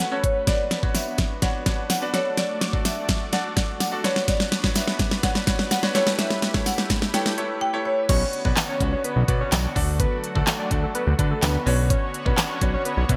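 A straight 4/4 pulse from an up-front pop drum kit drives this bittersweet dance-pop fragment, with a knocking kick, fat snare, crisp hi-hat, handclaps and crash cymbal all treated with gated reverb. Through the build-up a drum fill runs under a woody marimba melody, which rings with digital delay and a boxy small-room tone. Beneath it, brilliant, polished grand piano chords and a lush, chorused unison pad both pump with sidechain, and a close, jingly tambourine joins in the background at 0.9 seconds. At the drop at 8.1 seconds the marimba gives way to a warbling, vintage analog lead with a sub octave, chorus and delay, while a detuned sawtooth bass enters up front with a filter sweep and its own sidechain pumping. The harmony circles Bmadd9, D and A7 under a bright 1980s-style digital production with moderate plate reverb.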